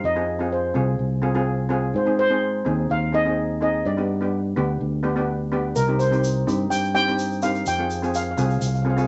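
A shimmering steel pan carries the melody, played on double seconds with soft rubber sticks for a mellow, up-front tone that sits between Bb4 and G5. This short calypso passage, cut from a longer piece, moves at 126 BPM in a straight 4/4 feel, tuned to A4 = 441 Hz, and its mood is tense and dramatic. Beneath the lead, cello pans struck with hard rubber sticks supply a dark, smooth accompaniment, while a fingered electric bass, direct and amped with a rounded warmth, anchors the low end. The harmony moves from Fm7 through Ab, G and Cm before returning to Fm. A grainy, bright tube shaker enters at 5.8 s, close and dry, adding texture to the final seconds. The whole is set in a wet studio ambience with a soft, rolled-off top end.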